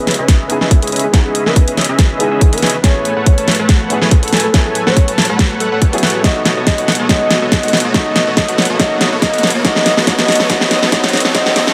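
Lightly reverberant and high-passed, this emotional, lush future bass build-up runs at 141 BPM in a swung half-time feel, moving through C#m9, Amaj7 and B9 as a thick, detuned, compressed supersaw riff pumps under a low-pass filter sweep. A round, dark, octave-layered synth lead carries the melody with chorus, vibrato, tape echo and sidechain pumping, while a felt-muted upright piano adds mellow, intimate accompaniment with audible action noise. Up front, a hard-clipped electronic kick and a layered big-room kit with a huge snare and hi-hat play a drum fill, and a very quiet riser enters at 2.5 s.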